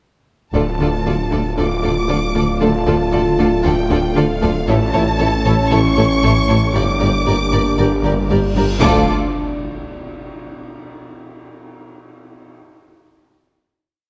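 A straight 4/4 pulse pushes this cinematic hybrid of orchestra and electronics forward with a relentless, tense mood, moving from D minor through A and G minor back to D minor. From 0.5 s, lush bowed violins carry an expressive melody with vibrato, while a second violin line and the viola section hold repeated notes and sustained chords, and distant, dark French horns add slow swelling chords in the background. The low end is heavy: a very quiet, dark cello section plays repeated and sustained bass notes, rich double basses and a very quiet, punchy tuba double the bass line, and a snarling, growling distorted saw bass sustains low notes beneath them. At 1.6 s an ominous, warbling, wave-folded drone with its own reverb creeps in to join the harmony. A huge reverse cymbal rises at 8.5 s into a dark impact at 8.8 s, where the full ensemble lands on a final D minor chord that rings out in a moderate scoring-stage reverb.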